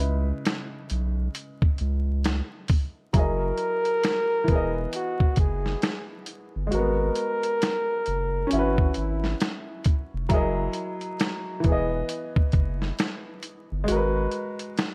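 A swung 67 BPM boom bap groove from a gritty, pitched-down sampler kit, with a thumpy kick, medium-tuned snare and hi-hat, anchors this melancholic, reflective lo-fi hip hop excerpt in C# dorian, alongside a round, deep analog bass. A woody upright piano with a cassette tape character comps through chords such as C#m7, F#13, Emaj9 and G#m9. From 3.2 to 9.4 seconds a breathy, close-miked flugelhorn with light vibrato plays a mellow jazz-style solo melody, all set in light reverb with vinyl crackle.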